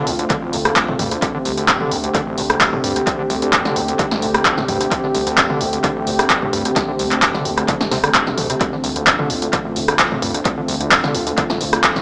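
Raw and gritty, this acid house excerpt runs at 130 BPM in a straight 4/4 in D minor, resting on a single Dm7 chord while a smooth, detuned sawtooth pad holds sustained chords with chorus and sidechain pumping. A squelchy, resonant square-wave acid bass drives a saturated riff with a filter sweep, tube saturation and dub echo, over a round sine sub bass sitting deep in the background. Up front, a punchy, tape-warm analog drum machine plays handclaps, hi-hat, rim click, snare and toms with tape echo, joined by an electronic kick from 0.3 seconds, all in an echo-heavy mix with moderate plate reverb and a small-speaker sound.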